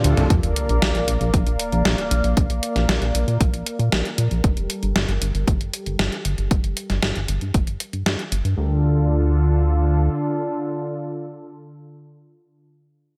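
A sampler-style gated 80s drum machine with a gated-reverb snare drives this nostalgic synthwave excerpt from the start, alongside a glossy, saturated chorused synth bass and a smooth, warbling detuned analog pad, both pumping to the sidechain under filter sweeps. A punchy, overdriven electronic kick joins at 0.3 seconds as a very quiet sub drop marks the impact. The kick drops out at 7.6 seconds, and the drum machine falls away at 8.6 seconds.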